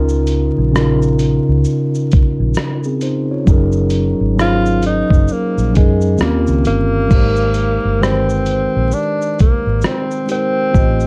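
A breathy tenor saxophone carries the melody from 4.4 s, playing in a jazz style with light vibrato, scooped notes and a smooth top, softened by a low-pass filter. This is a nostalgic, mellow lo-fi hip hop piece at 66 BPM in 4/4, with a swung sixteenth-note feel, cut from a longer work. Underneath, a mellow tine electric piano plays accompaniment through built-in speakers, its clean tone dulled by cassette tape and a low-pass filter, moving through Db69, Gb6 and Eb13 before reaching Abmaj9 as the music turns to Ab lydian at 7.1 s. A dark, round, foam-muted fingered electric bass sits up front with a punchy, amped sound. A dusty sampler-style drum kit of thumpy kick, rim click, hi-hat, shaker and crash cymbal brings a gritty, compressed character, re-recorded in a large room. Light reverb, vinyl crackle and a dark, warm production complete the sound.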